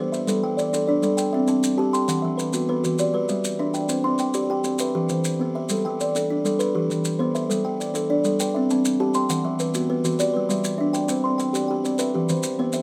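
This southern African traditional piece is built on an mbira-style interlocking cycle, hypnotic and warm in mood. It moves at 133 BPM in a straight 12/8 in G major, and it is cut from a longer piece. Two kalimbas play arpeggios from the very start and carry on through 12.8 seconds. One is thumb-plucked with a buzzing, ringing voice, and the other is a mellow, fingertip-plucked instrument with a woody, hollow-box tone, close-miked and dry at the front of the mix. Grainy maracas join quietly at 0.1 seconds, sitting lower in the mix and sounding close and acoustic. The harmony circles through G, C and E minor over and over, and a moderate studio reverb gives the room a modest sense of space.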